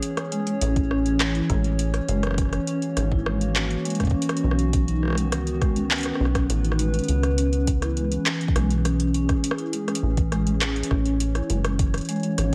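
Straight 4/4 IDM with a cerebral, intricate mood: an electro analog drum machine of handclaps, metallic hi-hats and rim clicks, joined by a deep, produced electronic kick at 0.8 s, underpins a rubbery, saturated acid bass sitting up front, while a soft-mallet vibraphone plays mellow, ringing arpeggios through tape echo over a warbling, nostalgic lo-fi pad whose sidechain-pumped sustained chords move from Amaj7 through F#7, B7 and C#m7 in light digital ambience.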